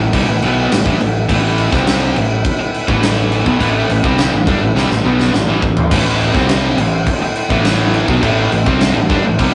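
A straight 4/4 pulse at 104 BPM drives this aggressive, menacing hard rock excerpt in A minor. An up-front big rock drum kit with a punchy kick and rolled-off top plays alongside a round, fuzzy fingered electric bass, while two picked distorted guitar riffs sit in the background, one sludgy and overdriven and the other tight and bright. A very quiet, gritty tonewheel organ holds sustained chords through a slow rotary speaker with key click, a drum fill runs from 4.8 to 5.9 seconds, and a very quiet double-tracked distorted electric guitar joins with its riff at 5.9 seconds, the whole piece caught in a rough rehearsal-room recording with tube saturation and a small room's reverb.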